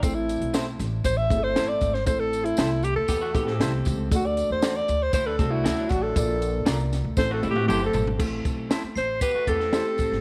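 An alto saxophone leads this passionate, urgent slice of 1960s-style soul, carrying a solo melody up front with vibrato, a soft attack and a smooth top, trailed by tape echo. Beneath it, a mellow upright piano with audible action noise and long sustain plays accompaniment, while a woody pizzicato upright bass on steel strings sits up front. A compact cocktail kit keeps a straight 4/4 with dry, dark cymbals, a high-tuned snare and a punchy kick. A slightly broken-up electric guitar through a small old amp sounds a lo-fi riff in the background, heard at the start and again from 3.1 seconds, and a second guitar adds fingered, compressed stabs bathed in spring reverb, with a jingly tambourine close and dry at the back. A drum fill closes out the solo as the harmony moves from Am through D and Bb back to Am. In the new section that follows, a glockenspiel struck with brass mallets enters at 9.0 seconds with a sparkling, bell-like second line, and the recording carries a light small-room reverb.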